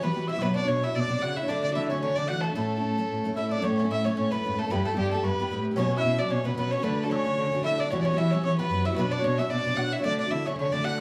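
Celtic folk reel in A mixolydian at a brisk 224 BPM with a light swing, lively and rollicking in this 11-second cut from a longer piece, set in a small room. A rich, biting fiddle, played by a single player, carries the melody up front with light vibrato and a touch of plate reverb, while a dark, woody bowed cello anchors the bass beside it. A bright picked steel-string guitar with audible finger squeak provides the accompaniment, and in the background a doubled-string bouzouki with a metallic edge and an airy, chiffy tongued tin whistle add second lines over chords such as Bmadd9, Dadd9 and Em/G.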